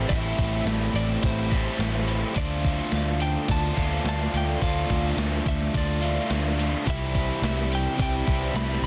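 A straight 4/4 pulse at 106 BPM comes from an up-front gated 80s digital drum machine with a thumpy kick, an overdriven gated-reverb snare and hi-hat, driving this dreamy, melancholic shoegaze and dream pop rock fragment over Am7, Dm7 and C, where a dark, round, foam-muted vintage bass anchors two overdriven guitar riffs (one biting and washed in reverse reverb, the other a raw garage tone with subtle chorus), while a clean, compressed, direct-recorded guitar melody sits in the background through analog delay above a very quiet, lush sawtooth string machine holding slow-attack chords, all in a dry, dense, heavily limited modern master.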